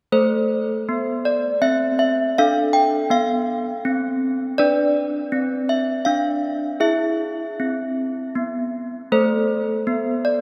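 Clanky, ringing desk bells, slightly out of tune, carry this solemn, wintry classical handbell tune alone from 0.1 to 10.4 seconds, spanning A3 to G5 in A minor. At 80 BPM in a straight 3/4, the passage moves through Am, Dm, Bdim and E before settling back on Am at 9.1 seconds. A long, wet cathedral reverb places the bells further back in the room, and this short passage is cut from a longer piece.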